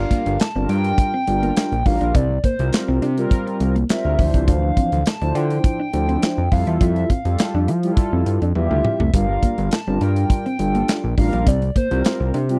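Dry and close, with the feel of a 1970s studio and little reverb, this short cut from a longer early-eighties boogie funk piece sits at 103 BPM in a straight 4/4 and G dorian, with a late-night, funky mood. A fat, thick sawtooth analog bass with a detuned edge and filter sweep sits up front beside a punchy acoustic drum kit of kick, medium-tuned snare, hi-hat, toms and handclaps, heard in a studio room. Mellow synth brass fills the middle with a round, dark sawtooth accompaniment softened by chorus and a filter sweep, while a clean, fingered electric guitar plays a riff in the background through a lush chorus. On top, a hollow, woody clarinet-like synth lead carries the melody with vibrato, phaser and slapback echo. The harmony moves through Gm7, C7sus4, Dm9 and Fmaj9, and a drum fill between 8.6 and 9.1 seconds leads back to Gm7.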